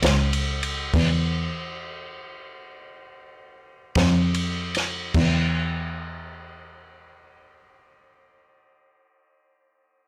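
A muted, bowed double bass and a compact cocktail drum kit open this slow 12/8 blues fragment together, setting a laid-back, soulful mood with a straight feel. The bass is a single player with a veiled, con sordino tone, colored by vibrato, portamento and tube saturation. The dry, acoustic kit sits up front with a tight kick, a high-tuned snare, and dark crash and ride cymbals. The music slows from the start and breaks into a stop at 0.9 seconds. The drums fall away at 5.3 seconds, leaving the bass alone until it ends at 8.9 seconds. Light reverb surrounds a blown-out, overdriven recording that gives the whole passage a gritty, saturated edge.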